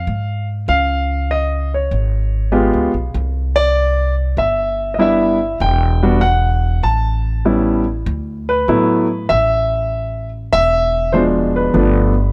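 A polished, present baby grand piano carries the melody up front through this relaxed jazz passage at 98 BPM in 4/4, its eighth notes swung at 69%. A woody, thumpy upright bass plucked on gut strings sits close beside it, supplying a dark acoustic low end as the harmony moves from C# and C through Emadd9, A9 and E7b9 before arriving at G7. Light reverb gives the short piece, cut from a longer performance, a warm sense of space.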